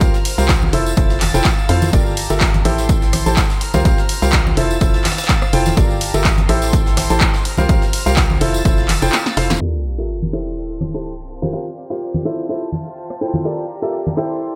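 This energetic, soulful piano house excerpt opens at 125 BPM in G dorian, with a clear, woody upright piano riff up front over a hollow, organ-like FM bass, a punchy electronic kick and soft, sul tasto violin chords floating in the background. A punchy analog drum machine adds handclaps, hi-hat, rim click and snare, joined by bright, saturated tambourine and congas and a very quiet, gritty, pitched-up breakbeat kit with a high-tuned snare, all riding a lightly swung 16th-note feel. The piano, bass and strings pump against the kick, and the piano carries a vintage tape echo. The chords cycle through C7sus4, Fmaj7, Gm9 and Am7. At 9.1 seconds the kick drops out for a drum fill, followed by a band accent at 9.5 seconds. At 9.6 seconds the bass and breakbeat kit stop, a sub drop hits, a filter sweep moves across the piano, and a lush, distant string section with vibrato thickens the background inside a small room ambience.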